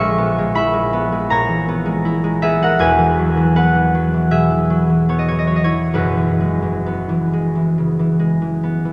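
Graceful and peaceful, this short excerpt from a longer classical piece features a solo concert harp in E lydian, moving with a rubato feel around 66-81 BPM in 4/4. The fingerpicked harp sounds acoustic and ringing, up front across a span from E1 to C#6, passing from C#m7/A# to Eadd9 at 2.8 seconds and F#9sus4 at 5.9 seconds. A wet cathedral reverb with a 6.0-second decay fills the church or concert hall around it.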